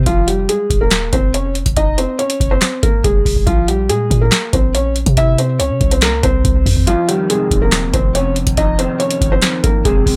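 Melancholic yet hard-hitting, this half-time trap and hip hop fragment opens with a soft, felt-muted upright piano carrying the melody up front, its intimate sound and audible action noise set over a deep, boomy 808-style bass with a sine tone and a noise layer. A booming analog drum machine drives the track with a deep kick, crisp snare, handclaps and metallic hi-hats, tape-warm and given a short room on the snare, clap and hats. At 6.9 seconds the kick drops out briefly as a dark, slightly broken-up electric guitar with analog chorus enters underneath, all in a dry, close mix.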